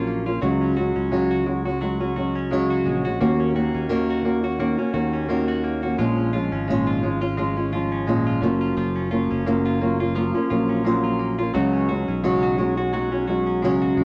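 Carefree and easy-going, this short acoustic pop passage is cut from a longer piece and moves with a relaxed, lightly swung sixteenth-note feel. A dark, thumb-plucked nylon-string guitar with fresh strings sits small and up front, carrying the accompaniment across the full 14.0 seconds. Beneath it, a sustaining fretless electric bass adds a growly, amped low end coloured by lush chorus. A direct-recorded clean electric guitar plays bright, twangy, compressed arpeggios further back in the blend, its picked notes taking on the softened character of cassette tape, as the nylon-string guitar's do too. The harmony drifts from C#sus4 through D#m7, A#m7 and F#maj7 before returning to C#sus4, all within a wet small room that gives it the intimate, slightly hazy feel of a home recording on cassette.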